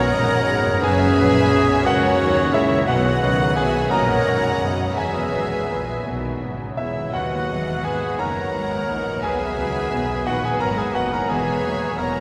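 From the first moment, a tender, moving cinematic passage in a rubato 6/8 unfolds: a focused violin section sings the melody over second lines from a lush violin section, a clear clarinet, an airy, hollow flute and a distant oboe, while a bright, up-front concert grand piano and a viola section accompany, a very quiet French horn section holds mellow sustained chords, a ringing thumb-plucked harp plays arpeggios, and cello and double bass sections carry the bass, the whole 12.2 seconds set in a long cathedral reverb.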